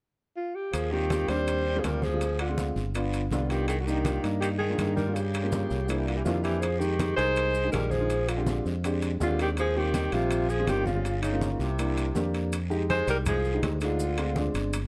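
Afro-Cuban jazz with a lively, danceable drive, heard as a short cut from a longer piece. A breathy alto saxophone with subtone vibrato carries the melody from 0.4 seconds, bathed in plate reverb, while a distant, roomy tenor saxophone with scooped notes and slapback echo traces a second line beneath. A growly, up-front fingered electric bass anchors the groove alongside very quiet congas, ringing timbales, raspy guiro and grainy maracas, and a dark, woody upright piano with audible action noise fills in the harmony over rich chords like Eb69 and Fm9.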